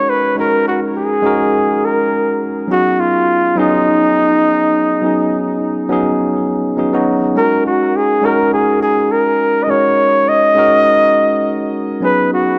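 A bucket-muted trumpet carries the melody up front, its veiled, mellow tone shaded with vibrato, scooped notes and a trail of delay, in this wistful chillout excerpt at 103 BPM with a light sixteenth-note swing in G# minor. Beneath it, a clean, bright tine electric piano, also echoed by delay, plays suspended ninth chords on G# and C# that shift at 2.7, 7.4 and 12.0 seconds. A moderate plate reverb and a dark, warm mix with softened highs wrap both parts in a hazy glow for the full 12.6 seconds.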